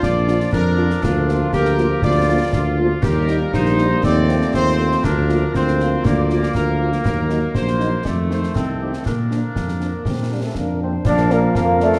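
Festive and rousing, this military-style march for wind band strides along at 120 BPM in 2/4 in Bb major, with a clear trumpet section carrying the melody over a tight woodwind second line, dark, roomy trombone chords held in the background, a very quiet French horn accompaniment and concert snare, bass drum and dark-toned clash cymbals heard close and dry. A mellow, close-miked tuba sits up front on the bass, while a warm euphonium joins at 9.6 seconds and a pure, hollow small flute group adds a distant second line from 10.3 seconds. The chords move from Bb through Eb to a brief Ebm before F7 resolves home, all set in a moderate concert hall reverb with a dark production, in an excerpt cut from a longer piece.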